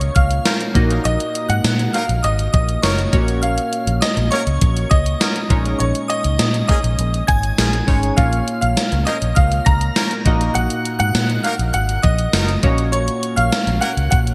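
1980s-style pop with an urgent, dramatic mood, heard in a short cut from a longer piece. An up-front digital drum machine drives it with a thumpy kick, gated-reverb snare, hi-hat and tambourine, joined by a dark, round, foam-muted fingered electric bass that sounds punchy and amped. Chorused retro synth keys supply glossy, detuned accompaniment built from pulse, sawtooth and sine tones, with pulse-width modulation, a filter sweep and fast-attack, decaying notes. A clear grand piano carries the melody with long sustain and delay, while a shimmering FM bell sits in the background as a dreamy, full-bodied second line in a higher register, haloed by ensemble chorus and delay. From 0.5 s until 13.9 s, a tight pop horn section with light vibrato and octave doubling adds stabs with delay from the background, and a lush hall reverb and bright digital production give the whole mix its period sheen.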